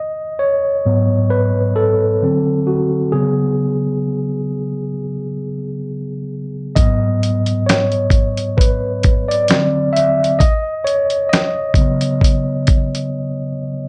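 Cassette-tape haze and a small, moderate room reverb soften this short lo-fi hip hop fragment, its top end rolled off to a dull sheen. At a relaxed, swung 66 BPM, a clean tine electric piano, filtered and heard as if through its own built-in speakers, leads throughout with reflective G#m7, D7 and C#7sus4 harmony that later colours into D9 and C#9sus4. At 6.8 seconds a gritty, overdriven sampler-style drum kit enters up front with a thumpy kick, medium-tuned snare and hi-hat, dropping out at 13.1 seconds to leave the piano alone in a hazy break.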